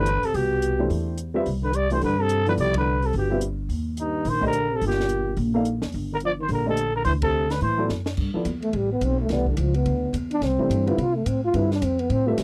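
A dry, close recording with the feel of a 1970s studio and a touch of light reverb frames this short cut from a longer modal jazz piece, spiritual and hypnotic, swinging at 214 BPM in 4/4 over chords such as G13sus4, Ebmaj7 and D9 before settling into G mixolydian. A growling, raspy trumpet carries the melody up front until 7.9 seconds, joined by a breathy, whispered trombone on a second line, while a slightly detuned upright piano with audible action noise comps and a woody, thumpy pizzicato bass on gut strings sits up front. The band hits accents at 2.7 and 7.2 seconds, and a compact cocktail kit with dark cymbals, a high-tuned snare and a punchy kick plays a fill at 7.9 seconds, after which the intimate trombone takes a solo with light vibrato from 8.2 seconds.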